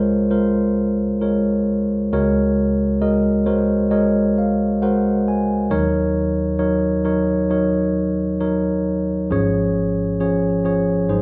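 Tender and hopeful, this short folk passage at 67 BPM in Db major features a solo tine electric piano, clean and up front as if heard through its built-in speakers, ranging from Ab1 to Ab5 over chords that move from Db6 through Gbadd9/Db and Ebm7 to Db/Ab, set in the wet reverb of a recital hall.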